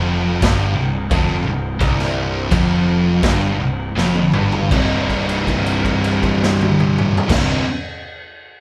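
Sludgy and heavy, this short cut of stoner and doom metal captures a band playing live in one room with light reverb, slowing down through its first 4.7 seconds before a drum fill leads into a held note that rings until 7.3 seconds. Two thick fuzz guitars, one of them dark, and a double-tracked, scooped overdriven electric guitar grind out the riff in the background alongside a growly, punchy fuzz picked electric bass. Up front, the raw garage drum kit enters at 0.4 seconds, gritty and saturated with a boomy kick, a medium-tuned snare, crash cymbal, toms and a rolled-off top in a pumping small room.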